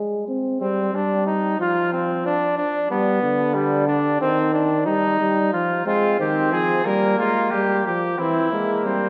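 A straight 4/4 pulse at 91 BPM drives this classical brass canzona in F minor, a short imitative passage lifted from a longer piece, with a mood that is both driving and contemplative. The euphonium opens the accompaniment at 0.0 seconds, its mellow tone carrying a light vibrato and a smooth top. The flugelhorn adds a warm second line from 0.6 seconds, sounding distant and roomy. The trumpet takes the melody at 5.9 seconds with a light vibrato and the same distant, spacious quality, sitting slightly lower in level than the other two horns. Harmonies move from C minor through Dm7/F, G and F minor before settling on C/E, and a wet concert hall reverb with a long 2.5-second tail surrounds the ensemble in a generous acoustic.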